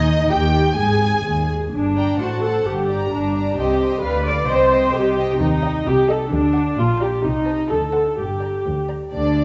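A dark, reverberant scoring-stage sound frames this stormy, urgent fragment of a quick classical-period movement for string orchestra in G minor at 129 BPM in 2/4, where distant, woody first violins carry the melody over a close, intimate second violin line, up-front violas with soft attacks, a smooth-topped cello section and dark double basses, all bowed sul tasto as the harmony presses from G minor through C minor toward a D7 that resolves home at 8.2 seconds.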